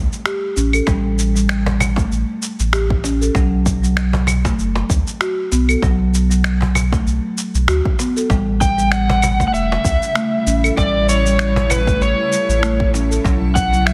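This earthy, organic downtempo excerpt opens on a round, up-front sub bass. It is joined almost at once by gritty, sampler-style shaker, finger snaps and claves, and a mellow soft-mallet marimba arpeggio trailing delay and shimmer reverb, with an overdriven electronic kick and a woody, band-limited cajon arriving at 0.9 seconds over a gently swung feel. At 8.6 seconds a dark, overdriven slide guitar played with fingerpicks takes the melody up front, and from 9.6 seconds a blurred, evolving granular cloud pad with sidechain pumping sits in the background, all within a dense, heavily limited sound and a moderate echo-chamber reverb.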